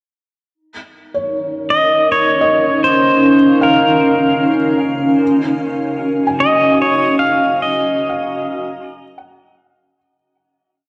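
Ambient piece in Eb minor at 76 BPM in a straight 3/4, melancholic and reflective in mood, tuned to A4 = 442 Hz and set in a wet cathedral reverb with a 4.9 s decay. A felt-muted upright piano enters first at 1.1 s, scattering soft, intimate arpeggios between Db5 and Ab5 through a diffuse ambient delay, its thin felt lending a vintage, muted character. At 1.3 s a granular cloud pad arrives up front with slowly shifting sustained chords from Db4 to Bb5, a blurred, evolving, full-bodied sound of detuned sine unison with slow attacks, long release, a moving notch and its own built-in reverb. A pedal steel guitar joins at 1.7 s with a motif-based melody of call phrases between Bb4 and F5, played clean and compressed with fingerpicks, slide and volume swells, its twangy electric tone also up front and washed in diffuse delay. The short whole piece runs as a single section and fades out over its final seconds from 6.8 s to 10.0 s.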